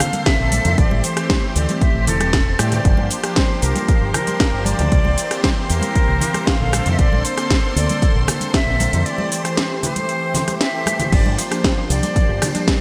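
An airy, expressive jazz flute carries the melody with vibrato and digital delay over a sensual, sleek nu-disco groove in G dorian at 116 BPM, supported by round, detuned synth brass with chorus, phaser and a touch of 12-bit sampler grit, and a lush string machine pumping in the background. A punchy electronic kick sits up front with a house kit of cracking snare, metallic hats, ride, crash, rim click and cabasa, while compressed, soft-handed congas sit behind and a bright fingered electric bass with an envelope filter anchors the chords, moving from Bbmaj9 through Am7, Gm7 and C7. After a break at 9.1 seconds, a very quiet analog pluck adds arpeggios from 11.1 seconds, all wrapped in bright 1980s-style digital production.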